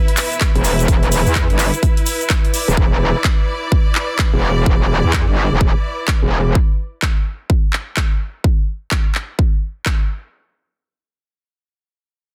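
A bright, close string section bowing with vibrato between E4 and E5 opens this gritty, aggressive bass house excerpt at 127 BPM with a swung 16th-note feel, pumping against the sidechain until 6.6 seconds, as a tape-warm house kit of handclaps and hi-hat, a brief grainy egg shaker, a punchy overdriven kick up front and a metallic, distorted FM wobble bass with chorus wobbling between E1 and E2 pile into a dense, heavily limited, dry mix.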